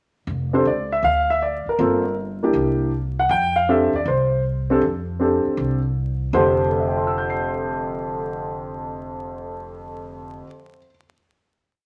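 Warm and relaxed, this short, complete jazz piece swings gently in 4/4 with a lilting eighth-note feel. An acoustic upright bass opens at 0.3 seconds, played pizzicato on steel strings with a woody, growly tone and a steady two-feel that stays low in the mix. The upright piano sits up front with a long sustain, stating a bebop-style theme that returns and adding syncopated comping in rootless voicings over a progression moving from Dm through Gm11 and C9 to F69. After the theme, the pair settle onto a final chord at 6.3 seconds, and the piano rings on until 11.1 seconds. A moderate, large studio reverb and a layer of vinyl crackle give the sound a roomy, slightly aged character.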